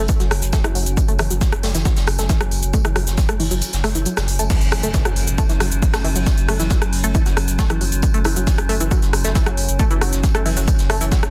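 Relentless and dark, this driving peak-time techno cut from a longer piece runs at 136 BPM in F# minor, with a punchy, up-front electronic kick and a layered techno kit of crash, smooth hats, rim click and shaker over a deep, saturated sub bass, a tight wave-folded sawtooth riff pumping through chorus, phaser and digital delay, an eerie metallic inharmonic drone, and a distant, roomy brushed jazz kit of hi-hat, high-tuned snare and tambourine, before the kick drops out at 3.6 seconds and returns at 4.5 seconds for the drop with a very quiet electronic impact, all in a dense, heavily limited mix with little reverb.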